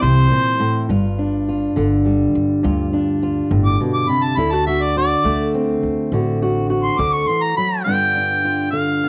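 A rollicking 12/8 pulse at 69 dotted-quarter beats per minute drives this gritty acoustic country blues fragment in G mixolydian, moving through C7, G7 and D7. A bright, close-miked harmonica carries the melody up front with light vibrato, soft attacks and scooped notes, playing a jazz-inflected solo through 7.9 seconds, while a dark fingerpicked steel-string guitar sits just as far forward and a woody pizzicato upright bass anchors the low end until 7.2 seconds. The home cassette recording lends a tape coloring to the harmonica and guitar in a moderate studio room, with plate reverb on the harmonica.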